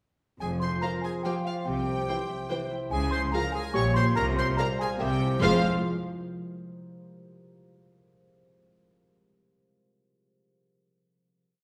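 Quirky and magical, this short whimsical film cue in F minor moves at 143 BPM in a straight 3/4: from 0.4 seconds a bell-like, delicate celesta carries the tune, doubled at the octave by a focused violin section, while a clear clarinet adds a classical second line, a ringing concert harp spreads broken chords, and lush cello and double bass sections hold the bass; from 0.8 seconds an expressive violin section and a dark, soft-edged viola section add after-beat chords, the ensemble heard from further back in a reverberant recital hall before settling on a final F minor chord at 5.4 seconds.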